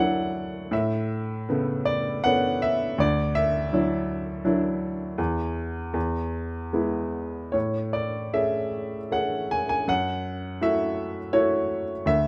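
Calm and tender, this short passage cut from a longer classical piece features a solo upright piano playing lyrically in A major, in 3/4 at a flexible, rubato pace of about 74-84 BPM. The piano sounds woody, smooth and vintage, with short sustain, sitting up front in close, detailed miking with light reverb as it spans D2 to G#5. Harmonies drift from Dadd9 and Aadd9 toward an E chord, then a new section from 7.5 seconds moves through Amaj7 and F#m7.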